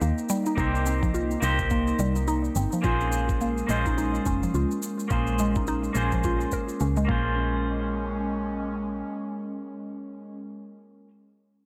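A twangy clean electric guitar with spring reverb and tape echo, a breathy, warbling pad under a filter sweep, a mallet-like FM pluck playing chorused, phased arpeggios, a soft, woody FM bass and an overdriven shaker open this earthy, hypnotic organic downtempo excerpt at 106 BPM in Bb dorian with a swung 16th feel, a gritty, thumpy kick joins at 0.6 s, the chords shift from Cm7 to Bbm9 at 2.8 s, the guitar, pad and bass pump to the sidechain, and the guitar rings on until 11.1 s.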